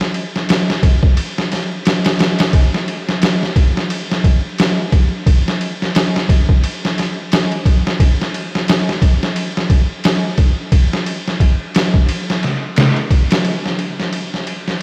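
The sampler-style drum kit stands out most, with a thumpy kick, a medium-tuned snare and ride cymbal, pitched down and muffled, carrying vintage 12-bit grit and overdrive. This is a cinematic, smoky trip hop cut in 4/4, taken from a longer piece, with a gentle swing on the sixteenths giving the groove a loping, unhurried sway. The compressed kit sits up front, and its sound suggests it was re-recorded in a small room. The drums play throughout, from 0.0 to 14.8 seconds, and the music shifts into a new section at 13.4 seconds. A huge ambient reverb with a long tail and a bed of vinyl crackle soak the mix, giving it a dreamy, hazy atmosphere.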